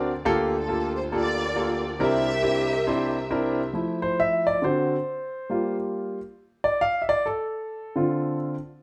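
Set in a large studio reverb, this jubilant, uplifting gospel fragment swings at 137 BPM in 4/4, with an intimate concert grand piano, its action noise audible and its bass deep, accompanying a lush, bowed string section that carries the melody with vibrato, portamento and tape echo until 3.3 seconds, after which the piano plays alone from 3.7 seconds through chords such as Fmaj7, D7 and Gm7.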